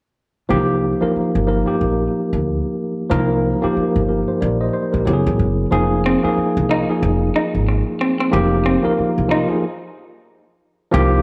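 Swung sixteenths in 4/4 carry this smooth, introspective neo-soul R&B fragment, cut from a longer piece, where a worn, slightly out-of-tune tine electric piano with light overdrive lays down Cm11 and minor-eleventh colours over a woody, growly pizzicato upright bass. A slightly broken-up, lo-fi electric guitar through a small old amp adds a short second line with spring reverb from 6.1 to 9.4 seconds, and the groove halts in a stop at 9.6 seconds. The moderate echo chamber gives the whole close, up-front band a studio sheen.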